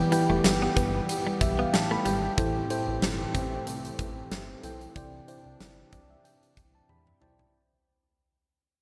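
This short excerpt of uplifting, nostalgic 1980s-style pop fades out from its very start, opening at once on a round, full-bodied FM electric piano, a smooth detuned analog pad holding sustained chords, and a glossy chorused synth bass with a plucky filter. Moving at 93 BPM in 4/4 with a light sixteenth-note swing in C major, the harmony steps from Em to Am7 at 2.4 seconds and on to Cadd9. A huge arena drum kit enters almost immediately, its punchy kick and medium-tuned snare sitting up front alongside hi-hat and toms, and it closes with a fill near 6.9 seconds. A clean, direct-recorded electric guitar picks a compressed riff in the background through analog chorus and digital delay, dropping out by 2.2 seconds. The dark, softly decaying electric piano adds fills of its own, all inside a bright digital production bathed in a long, wet plate reverb.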